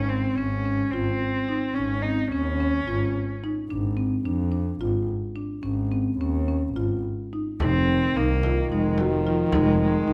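Moving in a straight 7/8 at 217 BPM counted in eighths, this restless yet hopeful contemporary chamber excerpt sets a bowed, vibrato-rich cello melody and a smooth, up-front double bass against mellow, woody rosewood marimba arpeggios, with the cello falling silent at 3.4 seconds and returning at 7.6 seconds alongside a dark French horn second line with a soft attack and a deep, saturated frame drum in the background, the whole piece sitting in a moderate recital hall reverb.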